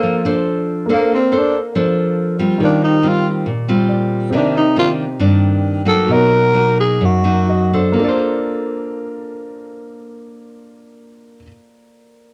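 This romantic, sophisticated bossa nova fragment opens with a growling tenor saxophone and a fingerpicked nylon-string guitar sounding together in Bb major, in a straight 4/4 at roughly 119-140 BPM. Up front and playing solo, the saxophone carries the melody with a breathy, raspy subtone, soft attacks, scooped notes, vibrato and a smooth top, set in plate reverb. The full-bodied, classical-style guitar, strung with fresh strings, shares the foreground with harmonies such as Bbmaj9, Eb69 and Cm9. An intimate baby grand piano joins at 0.9 seconds, sitting lower in the mix with audible action noise, and adds a brief fill at 3.7 seconds before the tempo slows down from 4.3 seconds through the rest of the first section. The saxophone drops out at 7.9 seconds, leaving guitar and piano to carry a second section that returns to Bbmaj9, all within a dark, warm production with moderate studio reverb.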